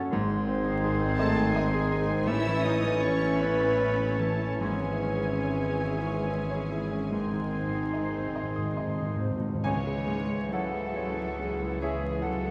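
A clear concert grand piano opens this tragic, brooding romantic movement, carrying the melody with a deep bass and an up-front presence while the orchestra gathers in slow, rubato 12/8. Almost at once, an airy flute, a vibrato-touched oboe and a very quiet, dark clarinet weave second lines. A punchy, close-miked bassoon, intense violas and soft-attack French horns hold the accompaniment and sustained chords, and a mellow tuba and smooth double basses anchor the bass. At 1.2 seconds, lush violin sections take up a melody and a second line, focused cellos join the bass, and a trumpet section adds background stabs. A timpani fill on calf heads with medium mallets enters at 7.1 seconds before the harmony settles back to the home minor chord. The sound is dusky and reverberant, set in a recital hall and laced with vinyl crackle, and the passage is cut from a longer piece.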